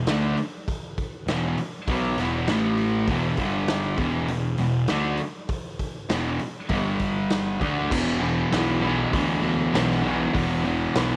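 A lightly reverberant small-room sound frames this swaggering, rowdy garage rock cut at 99 BPM in straight 4/4, where an up-front, double-tracked, dark fuzz guitar riffs on power chords around E5, A5, G5 and D5 over a round, overdriven picked electric bass and a raw acoustic drum kit with a punchy kick, medium-tuned snare, hi-hat and crash, with the passage shifting to a new section at 7.9 seconds.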